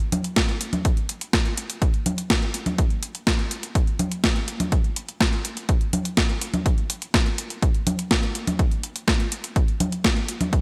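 A clean 12-bit digital drum machine opens this italo disco excerpt, its sampler-style congas, hi-hat and medium-tuned snare sitting up front with an overdriven grit, as if re-recorded in a small room. At 0.4 seconds a punchy analog electronic kick drum joins, also placed close and forward in the mix. The groove runs at 124 BPM in a straight 4/4 feel and holds as a single section through to 10.6 seconds, cut from a longer piece. The mood is nostalgic and melodramatic. A moderate, lush hall reverb and a bright 1980s-style digital production frame the percussion in a glossy, period-flavored space.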